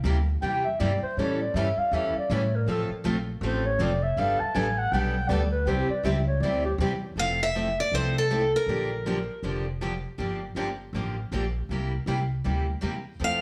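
Charming and playful, this short excerpt of acoustic string swing in F major moves at a brisk 160 BPM, with two picked steel-string acoustic guitars and a woody, thumpy pizzicato upright bass underpinning a breathy, whispered clarinet solo with subtone, scooped notes and analog delay until 6.7 seconds, before a bright, full-bodied dreadnought guitar takes the melody from 7.2 seconds in moderate studio reverb.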